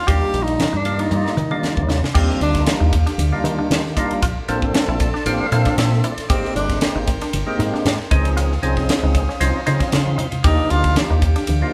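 Heard in a live-sounding large studio room with moderate reverb, this slick, bright electric jazz fusion excerpt in Eb major swings at 116 BPM: a close-miked, vibrato-laden tenor saxophone opens the melody and returns in brief solo phrases, a fat, lightly overdriven tonewheel organ with key click and slow rotary speaker adds fills around 4.7 seconds, a twangy clean electric guitar places compressed stabs in the background, a fingered bass with envelope filter sits prominently underneath, a crisp, up-front drum kit with high-tuned snare and punchy kick plays fills such as at 1.1 seconds, very quiet congas add soft-handed color, and an airy, breathy chorused pad enters at 2.2 seconds with sustained chords over a rich maj9 progression.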